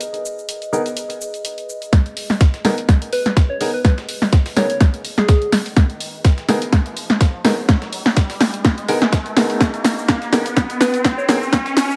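An overdriven, tight electronic kick hits up front from 1.9 s in this swaggering, aggressive bass house excerpt at 125 BPM in G# minor, driving a build-up alongside a punchy house kit of snare, shaker and hi-hat, a gritty sampler-style kit of hats, snare and tambourine in the background, sidechain-pumped grand piano stabs with tape echo, a dark, warbling lo-fi pad, a round FM synth lead with chorus first heard at 3.1 s, and an electronic riser that runs to the close.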